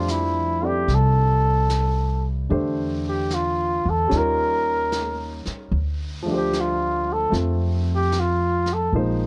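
A flugelhorn with vibrato carries the tender, intimate melody of this swung jazz ballad at 75 BPM, sounding roomy and somewhat distant, over polished, present grand piano chords moving from Fmaj7 through Eb9 to Dm7, a woody, thumpy pizzicato upright bass up front, and a soft, distant brushed drum kit from 0.1 seconds, all with light reverb and a cassette-tape character in this short warm excerpt cut from a longer piece.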